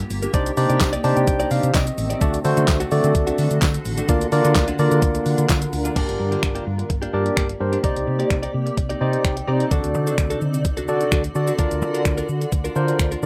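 Confident and bittersweet, this dance-pop excerpt in G minor moves at 128 BPM in a straight 4/4, built on a crisp 8-bit drum machine with a thumpy kick, snaps, claps and shaker, and a dark, round hollow-body bass that pumps against it. A barky tine electric piano sits up front with fills at 0.8 and 8.8 seconds, while a clean, picked guitar riff with subtle chorus and a blurred granular cloud pad hang in the background, and a faint jingly tambourine plays only until 5.6 seconds. Chords cycle through Cmadd9, D and Bb/D, settling onto Gm as the second section opens at 6.0 seconds, all in a rough home-demo mix with a small room's ambience.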